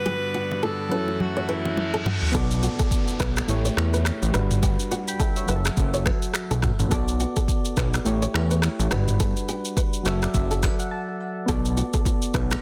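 A lightly swung 105 BPM afrobeats groove in B minor sets a mellow, sultry mood in this short cut, where a breathy, whispered alto saxophone with tape echo, a majestic full pipe organ and close, dry congas and bongos open over soft, warbling electric-piano-like synth keys with chorus and a fingerpicked flamenco guitar riff touched by tape echo, before a background reverse cymbal and downlifter lead into an up-front electronic afro-pop drum kit with deep kick, finger snaps, rim clicks, shaker, toms and a softly clipped snare at 1.8 seconds and a fat, detuned sawtooth analog bass at 2.3 seconds, with a synth keys fill and a brief break near the end as the hand drums return at 11.5 seconds, in a dense, dry, heavily limited mix.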